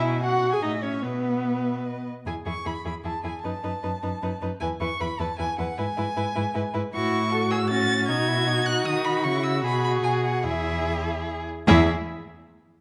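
In a brisk 3/4 at 154 BPM with a rubato feel, this spirited, cheerful excerpt from a classical-period string quartet movement in E major sets a lead violin singing high with vibrato and portamento over a soft-attack viola accompaniment and a focused, up-front cello bass line, while a more distant second violin joins at 0.2 s with its own expressive line, all bowed by single players and carried by a moderate recital hall reverb.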